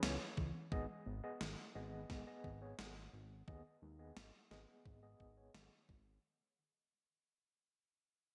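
Synthwave with a cinematic, nostalgic mood, this short excerpt is cut from a longer piece and moves in a straight 4/4 over a C#m7 to G#m progression. A warbly, dusty pluck plays arpeggios in the background, its lo-fi, detuned tone thickened by chorus and digital delay while a filter sweep runs across it. Up front, an overdriven tine electric piano adds barky, gritty stabs through a combo amp, with medium tremolo, a low-pass filter, delay and its own filter sweep. A fat analog bass with tube saturation anchors the low end, and a sampler-style electronic snare cracks through gated reverb and overdrive, joined by a thumpy, tape-colored kick from 0.4 s. The bright 1980s-style digital production sits in a lush hall reverb, and the whole passage fades out across its 6.2 seconds.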